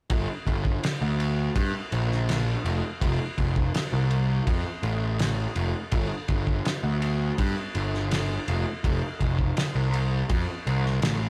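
A straight 4/4 groove at 82 BPM drives this short psychedelic rock passage in G minor, cut from a longer piece, with a trippy, mysterious mood. Up front, a picked electric bass with overdriven fuzz moves between F1 and G2. Beside it sits a cloth-damped, thuddy acoustic drum kit of tight kick, fat snare and dark ride cymbal, gritty in tone with its top rolled off. Both parts play throughout the rough rehearsal-room recording, which carries light reverb and warm saturation.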